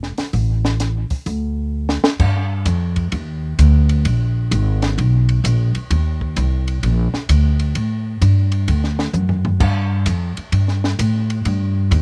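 A relaxed 4/4 swing at 130 BPM in G minor drives this jazz piano trio passage cut from a longer piece, where the woody, up-front pizzicato upright bass on steel strings plays throughout beneath a compact cocktail drum kit with a punchy kick, high-tuned snare, dark cymbals and a rolled-off top, with drum fills at 1.7 and 9.1 seconds, all captured dry outdoors with little reverb.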